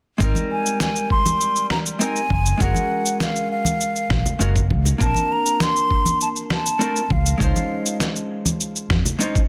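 Sunset chillout in a relaxed, blissful mood, this short excerpt drifts over lush major-ninth chords while an airy, tongued concert flute with vibrato and tape echo carries the melody up front from 0.5 to 8.0 s. Underneath, a dark, clean, picked hollow-body jazz guitar comps through its own tape echo, a round, amped fretless bass anchors the low end, and acoustic congas with a small-room sound add gentle color. A thumpy sampler-style kick and an up-front shaker and medium-tuned snare, both gritty with overdrive, sit in a moderate plate reverb within a dense, heavily limited modern master.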